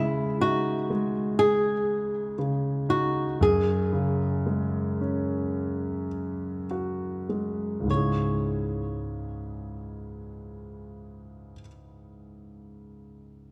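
Emotional and heartbroken, this slow pop excerpt in C# minor moves at roughly 49-62 BPM, easing down through its first 7.9 seconds. An up-front, fingerpicked flamenco guitar carries the melody with a boxy tone and audible finger squeak until 11.6 seconds, while a clear, intimate grand piano accompanies, its action noise audible, playing on until 13.5 seconds. The dark production sits in a moderate concert-hall reverb, with the harmony moving from C#sus2 to F#sus2 before settling on C#m.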